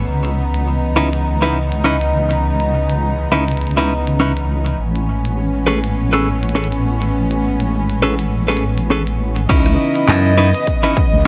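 Swaggering and funky, this short glitch hop excerpt in C# minor moves at 102 BPM with a swung 16th-note feel, cut from a longer piece. Dark, bowed strings played sul tasto hold soft-attack chords from the start, breathing with sidechain pumping over a heavy, detuned wobble bass whose chorus and tube saturation give it a thick, growling weight. A glitchy drum kit of clicky hats, handclaps, rim clicks and crash, re-recorded in a small room and muffled by low-pass filtering, sits low beneath clean, hollow-body electric guitar stabs that carry 12-bit sampler grit, delay and the same pumping. The harmony shifts from C#m9 to Amaj9 at 4.8 seconds and returns to C#m9 as the drop lands at 9.5 seconds, where a punchy, tape-warm electronic kick enters. Just after, a bright, growly slap bass punctuates briefly on F#2, while light reverb and vinyl crackle lend the whole a dusty, close-up character.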